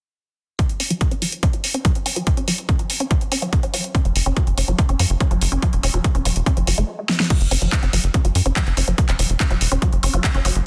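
Hypnotic and driving, this psychedelic trance excerpt runs at 143 BPM in a straight 4/4, sitting on an F#5 chord. From 0.6 seconds a lush, detuned unison pluck plays the riff between F#3 and C#4, its short, punchy decay pumped by sidechain and trailed by digital delay, while a filter sweep moves across the synth arpeggio sound. A heavy, tape-warm electronic kick sits up front beside a layered, overdriven big-room kit of crash, handclaps, hi-hat and a huge snare, both carrying a small room ambience. At 4.1 seconds a tight sequencer bass enters between E1 and F#2, its sawtooth-and-square tone mellow yet punchy with a fast filter pluck. A drum fill at 7.1 seconds leads into a new section at 7.3 seconds, where another filter sweep begins, all within a dry, dense and heavily limited modern master.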